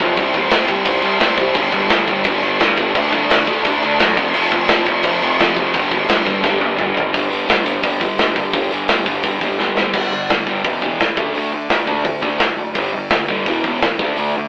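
Energetic and upbeat, this short punk rock excerpt drives forward with a crunchy, double-tracked overdriven guitar riff up front, a fuzzy, punchy picked electric bass sitting in the background, and a big acoustic rock kit with bright cymbals and a boomy kick that throws in fills at 6.4 and 9.6 seconds, all captured with light reverb and the rough, tube-saturated, telephone-like character of a rehearsal-room recording.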